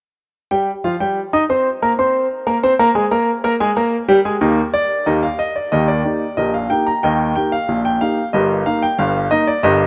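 A clear, polished baby grand piano plays alone and up front with long sustain, spanning G1 to Eb6 in a playful, jaunty ragtime excerpt in 2/4 with a straight feel, moving to a new section at 5.7 seconds and settling on Eb over G at 8.3 seconds, all bathed in a moderate plate reverb in a rough home demo mix.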